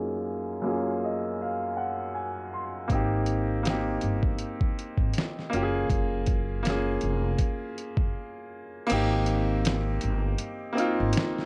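A bright, brilliant upright piano with long sustain opens this nostalgic, cosy lo-fi hip hop excerpt at 80 BPM in Ab major, playing a fill from 0.6 s under a low-pass filter sweep, before a growly pizzicato upright bass and a gritty, overdriven sampler-style drum kit with a thumpy kick and fat snare enter at 2.9 s, the kick falling silent at 8.9 s as Gbmaj9 and Abmaj9 chords alternate beneath light reverb and a cassette-tape finish.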